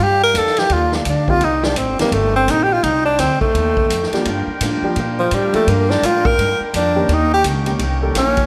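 A moderate recital-hall reverb frames this dramatic, swinging big band jazz, with a close-miked tenor saxophone up front playing a clear solo full of vibrato and scooped notes. Behind it, a smooth-topped saxophone section holds sustained chords, a woody pizzicato upright bass anchors the low end, and a distant, roomy drum kit with a boomy kick, medium-tuned snare and rolled-off top comes in at 0.3 seconds. A warm grand piano adds background accompaniment from 1.3 seconds, and a boxy picked steel-string acoustic guitar joins at 4.3 seconds.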